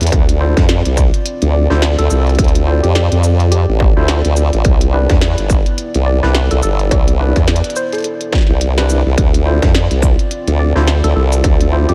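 A moody analog pad, an up-front wobbling formant-filtered bass and a glitchy kit of clicky hats, shaker and a tiny snare open this funky, playful glitch hop excerpt at 106 BPM, swung on the 16ths in D dorian, joined at once by a layered, distorted electronic kick. From 0.4 seconds a barky, overdriven tine electric piano adds gritty stabs with fast tremolo and diffuse delay in the background, and at 1.5 seconds a woody, wave-folded pluck melody enters with a moving notch and filter sweep. The pad's nasal, detuned chords pump under the sidechain as the harmony moves from Dm7 to Cmaj9 and back, all set in light digital ambience with a layer of vinyl crackle.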